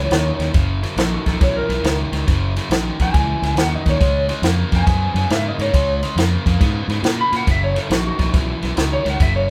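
A swung shuffle rolls along in 4/4, laid-back yet swaggering, as a short electric blues section cut from a longer piece. A compact cocktail drum kit sits up front, entering at 0.1 s with a punchy kick, a high-tuned snare and dark ride cymbal, all acoustic and dry. Underneath, a fingered electric bass gives a round, direct-and-amped low end, while a crunchy overdriven guitar plays a bright, picked riff in its lower register. Over this, an electric slide guitar takes a solo throughout, its tone dusky, slightly broken-up and compressed, played with fingerpicks. The harmony moves from F#7 to C#7 and back to F#7, and the band sounds as if it is playing live in one room with a moderate studio reverb.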